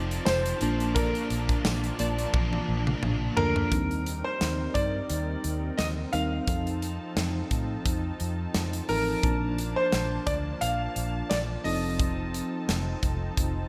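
A clear, smooth grand piano carries the melody from the very start, set over a dreamy FM electric piano with a soft pad layer, a brassy analog pad holding sustained chords, a round, foam-muted fingered bass and a biting overdriven guitar, with a polished studio drum kit joining almost at once. This is uplifting, nostalgic 1980s-style pop in a relaxed, lightly swung four, moving through lush seventh and sixth chords. In the opening stretch a funky, full-bodied polysynth briefly stabs with chorus and delay during a band accent, and a drum fill leads into the longer second section, where the guitar drops out at 3.7 seconds. The bold, warbling pad shimmers with chorus and vibrato, the electric piano sits in the background with chorus and tremolo, and the punchy kick and medium-tuned snare stay up front. A short electric piano fill closes this excerpt cut from a longer piece, all wrapped in a moderate plate reverb and bright digital-era production.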